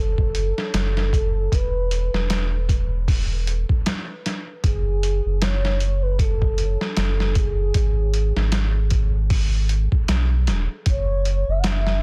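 A breathy, pure sine lead with gliding portamento and vibrato opens this dark, melancholic trip hop excerpt in F# minor at 77 BPM, set over a round, deep sub bass that sits up front, its melody softened by analog chorus and tape echo. At 0.2 seconds a sampler-style kit enters with a thumpy kick, a medium-tuned snare and hi-hat, pitched down, muffled and tape-warm, as if re-recorded in a small room, pushing a swung 4/4 feel. Under the F#m, E5, F#sus2 and G#m changes, the whole fragment sits in digital ambience with a dense, heavily limited modern master.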